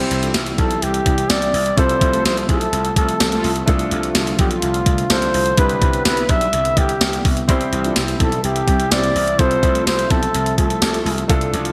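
A breathy, whispered flugelhorn carries the melody with light vibrato and delay over a thumpy, gated-reverb drum machine, growly overdriven slap bass, a warm grand piano, a chorused analog pad and dark synth brass stabs, in this romantic, glossy 1980s-style pop excerpt at 126 BPM, moving through C, Fmaj7, Dm and Em7 in a lush hall.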